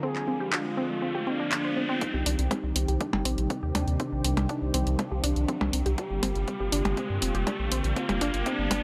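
A smooth, sawtooth portamento lead with vibrato, a chorused and detuned pad, a lush, punchy unison pluck arpeggio with tape echo under a filter sweep, and an electronic riser open this cinematic, dramatic melodic techno excerpt, with sidechain pumping on the lead, pad and pluck, while an up-front, layered drum kit of handclaps, tape-softened hi-hats and percussion blips joins almost at once. At 2.0 seconds a build-up begins and a filter sweep opens on the lead as a punchy analog kick, set back in a large room, arrives with a deep, round bass just after, and a very quiet, evolving pulse-width drone enters at 3.1 seconds. The harmony moves from C minor to G minor seven at 6.0 seconds, where a drum fill begins and runs to the end, all held in a light reverb.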